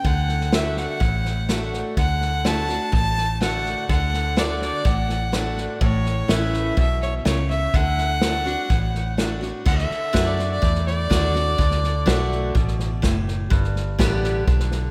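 Honky-tonk and classic country with a nostalgic, down-home mood, cut from a longer piece and set in a small room with light reverb. An up-front, clear bowed fiddle with light vibrato and tape echo carries an intense, smooth-topped melody, moving into a solo at 9.7 seconds before it stops at 12.3 seconds. A full-bodied picked dreadnought acoustic guitar, a dark, round, foam-muted fingered electric bass and a distant, roomy acoustic kit played with bundle sticks, with a punchy kick and dark cymbals, hold the accompaniment throughout.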